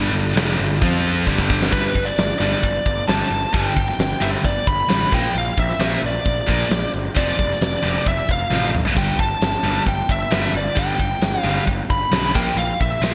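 A smooth, dark overdriven lead guitar with delay carries the melody from 1.7 s in this energetic, anthemic hard rock excerpt at 133 BPM, over a huge arena drum kit with gated reverb, punchy kick and fat snare entering at 0.4 s, riffs from a scooped high-gain guitar and a sludgy overdriven guitar in the background, a growly fuzz bass, and a very quiet shouting tonewheel organ with slow rotary that holds chords only until 1.7 s, the mix bathed in lush hall reverb and 1980s-style digital production.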